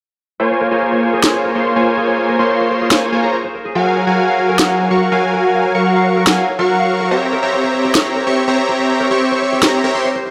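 A ringing, fingerpicked concert harp plays arpeggios alongside a huge, bright, detuned supersaw chord riff from 0.4 s, both low-pass filtered and echoed with delay, before a sharp, tape-warm electronic snare enters up front at 1.2 s in this dreamy, emotional future bass excerpt at 143 BPM in a half-time feel in Bb minor, moving through Bbm9, Gbmaj7 and C7b9 in a lush hall reverb with a dark production.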